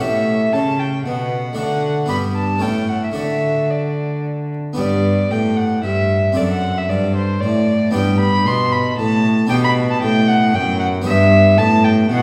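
From the opening moment a gut-strung violin, a harpsichord and a cello sound together in this serene, radiant excerpt from a baroque-style sonata movement with continuo, moving at 115 BPM in a straight 3/4. The violin carries the melody in a dark, nasal, reedy period-style voice, while a single bowed cello supplies a rich bass line beneath it. The close-miked harpsichord fills in the accompaniment with a dry, brilliant plucked sound in the French style, its octave strings giving it a full body. The music begins in D major and settles into G major from 4.8 seconds, with the harmony later turning to a D7 over F# and closing on an Em7 over G at 11.1 seconds. The ensemble is heard from further back in a recital hall, its generous reverberation lending the performance an airy glow.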